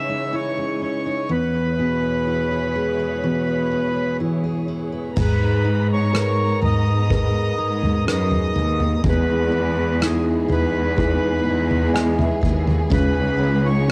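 A reedy, rich accordion carries the melody of this hopeful, emotional pop ballad excerpt at a slow 62 BPM in 4/4. Beneath it play a concert grand piano with deep bass and long sustain, picked arpeggios from a full-bodied jumbo steel-string guitar in the background, and lush sustained chords from a studio string section with vibrato and portamento, those three parts carrying a cassette-tape colour. At 5.2 seconds an expressive, bowed cello section enters up front on the bass line, joined by an airy small-room drum kit played with bundle sticks (punchy kick, rim clicks, toms and crash); the piano adds a fill at 11.5 seconds as the harmony moves from C#madd9 through G#madd9 and Emaj7 to C#sus2, heard through a homemade cassette recording with light reverb.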